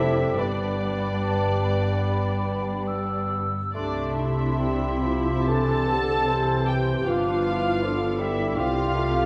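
This classical excerpt, cut from a longer piece, has a warm, tender mood and a rubato feel, resting on a simple G to C cadence with a G7 turning it home near 7.1 seconds. Muted violins carry a veiled, dark melody with light vibrato over a very quiet second violin line, while a hollow, pure flute, a distant clarinet and a close-miked bassoon add soft wind colour. Lush muted violas and mellow horn chords sit in the background, bowed cellos and double basses anchor the bass, and the whole ensemble fills out the sound in a reverberant hall.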